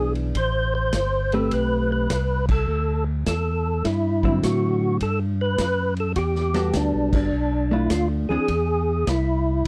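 Soulful and bluesy, this short cut from a longer soul jazz organ trio piece swings at 103 BPM in 4/4, settling in E minor. A percussive tonewheel organ carries the melody from the start, its fat, lightly overdriven voice marked by third harmonic percussion, key click and chorus vibrato, all turning through a slow rotary speaker and sitting up front. Beneath it, a second tonewheel organ plays the bass line with a warm, fat, clean tone through its own slow rotary speaker. A vintage hollow-body jazz guitar comps in a dark, clean, picked and compressed manner until 8.5 seconds, while a vintage drum kit enters at 0.2 seconds with dark cymbals, a medium-tuned snare and a punchy kick in a pumping studio room with a rolled-off top. The band hits accents together at 2.4 and 7.0 seconds over a progression moving from Am9 through D9, Gmaj9 and Bm7b5 before landing on E, all in a dry sound with little reverb.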